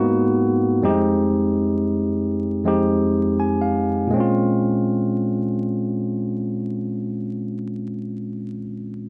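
A barky tine electric piano carries this short R&B excerpt on its own, sitting up front with a bright, clean tone pushed through a combo amp. It plays at 82 BPM in 4/4 with a swung sixteenth-note feel, in B-flat Dorian and tuned to A4 = 444 Hz, spanning F2 to Ab5 as it lays out accompaniment chords. The harmony moves from Abm9 to Fm9, and the piano plays a fill from 3.0 to 4.1 seconds before the passage settles onto Bbm9 at 4.1 seconds. A wet studio reverb and a layer of vinyl crackle give the sound a dusty, late-night glow. The mood is introspective, and the clip ends at 9.1 seconds as a fragment cut from a longer piece.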